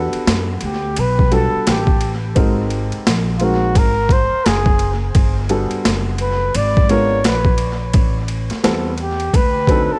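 Jazz-hop in the hip hop vein, this smooth, cool passage moves at 86 BPM in 4/4 with a lazy 16th-note swing. A boom bap sampler-style drum kit sits up front with a thumpy kick, high-tuned snare, hi-hat and ride cymbal, its pitched-down, compressed sound roughened by overdrive and 12-bit grit and re-recorded in a large room. A pizzicato upright bass with steel strings supplies a woody, growly low end, while a dark grand piano plays mellow, short-sustained chords with audible action noise that gives it a vintage, close-up feel. From 0.7 seconds a breathy flugelhorn carries the melody up front, its soft attack, whispered tone and jazz vibrato trailed by dub echo. The harmony drifts from a rootless Em11 through Ab9, Gmaj9 and G#dim7 to Am7 and D7b9, all wrapped in light reverb in an echo-heavy mix of a segment cut from a longer piece.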